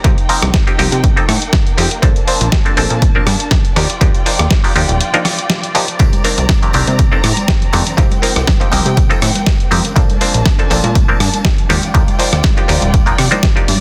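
A sunny, feel-good filtered disco house piece at 121 BPM in F mixolydian opens with a punchy, up-front electronic kick, a gritty, tape-warm sampler-style kit of hi-hat, rim click and snare, a saturated, wave-folded analog bass, a twangy muted clav through a phaser, and a distant, lush violin section bowing sustained chords over F9sus4/C, Bbmaj7 and Ebmaj9, with sidechain pumping on the clav, bass, strings and hats, before background tambourine and congas join at 6.0 s in a dense, heavily limited mix.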